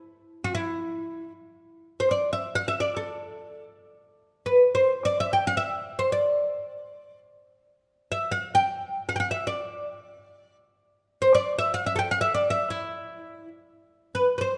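Persian modal music in free time, this soulful, longing excerpt is cut from a longer piece and set in dastgah shur on E, tuned to A4 = 441 Hz. A solo oud carries the whole passage, entering at 0.4 seconds and playing until 14.6 seconds, ranging from E4 up to G5. Its plectrum-plucked, fretless voice sounds bright and woody, with the doubled strings lending depth. The instrument sits up front in the sound, wrapped in a light reverb. The playing lets the mode's yearning character come through in a single unaccompanied line.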